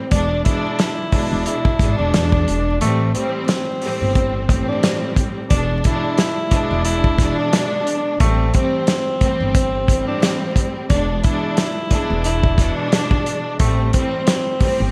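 Bright 1980s-style digital production with vinyl crackle and light small-room reverb frames this tough, reflective boom-bap hip-hop excerpt, where a breathy, whispered tenor saxophone with digital delay carries a jazz-style melody over lush bowed symphonic strings, a woody pizzicato upright bass and an up-front soul drum kit with a tight kick and gated reverb, as the chords alternate between E7 and Am7 with a break from 2.8 to 4.2 seconds.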